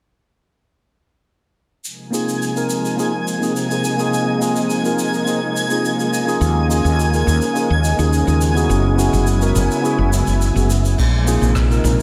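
A sunset chillout passage, cut from a longer piece, with a warm, sunny mood and a straight, unhurried feel. A silky vintage string machine holds soft sustained chords from 1.8 seconds, its slow attack and long release thickened by ensemble chorus. Brushed jazz drums sit distant and roomy beneath it, with dark cymbals, rim clicks and shaker. A mellow tine electric piano carries the accompaniment, clean yet roughened by vintage 12-bit sampler grit, a low-pass filter and delay. High above, a twinkling granular texture adds octave-up shimmer through its own reverb. A woody fretless bass arrives up front at 6.4 seconds, round and punchy, while a deep analog kick surfaces in the background at 11.0 seconds as the harmony returns to Bb9sus4, all set in a lush hall that gives a big arena sound.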